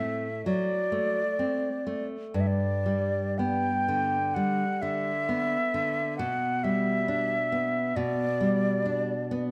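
A wet recital-hall reverb surrounds this brief, solemn and melancholic excerpt from a romantic duo for flute and classical guitar, set in G major at a slow, rubato 56-68 BPM in 4/4. Close and up front, the airy concert flute carries the melody in its upper register with vibrato and a crisp attack, while the full-bodied, fingerpicked nylon-string guitar supplies a deep classical accompaniment. Both play throughout the 9.5 seconds as the harmony moves from D7/A to G and settles on G/B.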